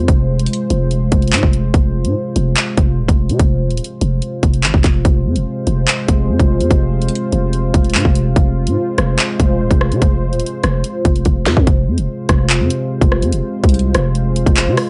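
A half-time drill groove from an up-front electronic kit of hard-clipped kick, sharp snare, handclaps, rim clicks and hi-hats drives this dark, tense hip hop excerpt, with a growling, buzzy 808-style bass pushed forward beneath a deep, moody pad of detuned sawtooth tones with chorus sustaining slow-attack chords, while a drum fill at 11.3 seconds leads into a new section, and the recording sounds dry and gritty with transformer saturation and a cassette-dulled top end.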